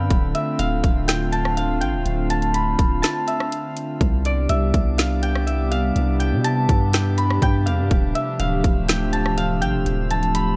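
Blissful and floating, this atmospheric cloud-rap excerpt moves at a half-time pace over Dm9 and Cmaj9 chords. A ringing, fingerpicked Celtic harp carries the melody through digital delay above a hollow, flute-like pad with chorus and sidechain pumping, while a glassy texture of drifting overtones sits in the background, softened by chorus and reverb. Up front, a deep, mellow 808-style bass sustains long decaying notes, and from 0.1 seconds a produced trap kit adds a hard-clipped kick, woody snare, rim click and bright hats in a digital ambience, with a break at 3.0 seconds.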